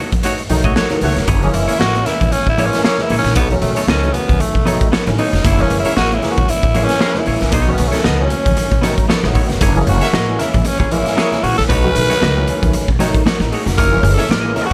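This energetic, gritty funk excerpt opens with a warm, clean semi-hollow electric guitar and a barky tine electric piano firing lightly overdriven, chorused stabs, joined almost at once by a raw garage drum kit, background congas and a distant, roomy horn section playing a second line. The groove moves at 115 BPM in 4/4 with a slight 16th-note swing, circling between B9 and F#9 chords. A woody, thumpy upright bass enters at 0.5 seconds, its pizzicato steel strings sounding growly under the punchy kick and medium-tuned snare, which sit up front with a saturated, rolled-off top in a pumping stone room. At 1.5 seconds a growling tenor saxophone takes the lead with a breathy, raspy solo, present and punchy with light vibrato. The congas stay thin-skinned and band-limited beneath everything, and a light reverb holds the ensemble together.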